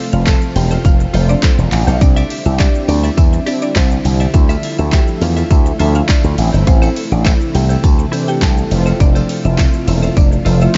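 A straight 4/4 groove at 103 BPM drives this summery, carefree dance-pop clip, cut from a longer piece, with a layered house drum kit of punchy kick, snare, handclaps, hi-hat and shaker sitting up front alongside a bright, punchy slap bass shaped by an envelope filter and pumped by sidechain compression. Over this, a woody, mallet-like FM synth pluck carries the melody with chorus, analog delay and the same pumping, while a dark, brassy synth brass with detuned sawtooth tone, vibrato and a filter sweep fills in the accompaniment from the background. A clean, direct-recorded electric guitar plays a compressed, picked riff with subtle chorus, tucked into the background. Very quiet, a silky vintage string machine holds sustained chords with slow attack and ensemble chorus, and a jingly, band-limited tambourine joins at 0.3 seconds. The chords move through F, Cadd9, Dmadd9 and Am before returning to F, all set in light digital ambience with a soft top end.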